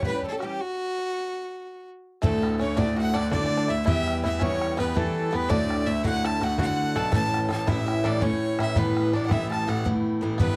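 Rollicking and lively, this Celtic folk slip jig in D major moves at 110 BPM in 9/8 with a straight feel, cut from a longer piece. A clear, biting fiddle carries the melody up front, played by one bowed player with light vibrato and an airy, intense tone, while a reedy, full accordion adds a second line in the background. A boxy parlour steel-string guitar picks out the accompaniment, and a boomy, open bodhran provides the percussion with a live-room sound. After an opening A7 chord, the band hits a stop at 0.6 seconds, and at 2.2 seconds a twangy banjo played with fingerpicks joins as a percussive second line in the background, along with a brilliant concert grand piano taking the bass up front with a deep low end and long sustain. The harmony then moves through D, Em, D and A before settling on Asus2, all captured in a dry, close 1970s-style studio recording.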